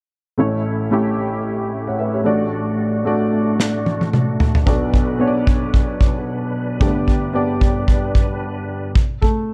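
An upright piano and a tonewheel organ open together at 0.4 s, setting a hopeful, uplifting tone in this piano-driven pop passage with a light swing. The piano carries the accompaniment up front, its tone woody and slightly detuned, reaching from deep bass notes into the upper register. Beneath it, the organ holds sustained chords with a reedy, clean brightness, touched by key click, chorus vibrato and a slow rotary speaker. An acoustic drum kit, captured in a small room, comes in at 3.6 s with a fill, the punchy kick and medium-tuned snare sitting prominently in the mix. The harmony moves from A through D over A, B minor and G, and the piece, cut from a longer work, wraps in a moderate studio reverb with a dark, warm production overall.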